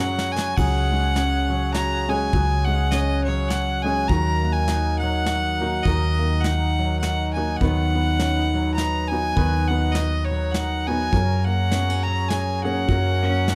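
A clear fiddle with light vibrato opens up front over fingerpicked steel-string guitar with audible finger squeak, a reedy pedal harmonium, a felt-muted upright piano playing mellow arpeggios, and a dark, round hollow-body electric bass, while a brushed drum kit joins at 0.2 seconds with a short fill. This pastoral, nostalgic acoustic folk piece moves at 102 BPM in a swung 3/4, drifting through F#add9, C#sus4, D#m and B/D# chords. The fiddle carries a touch of plate reverb, and a rich bowed cello slips in at 13.2 seconds just as the excerpt ends.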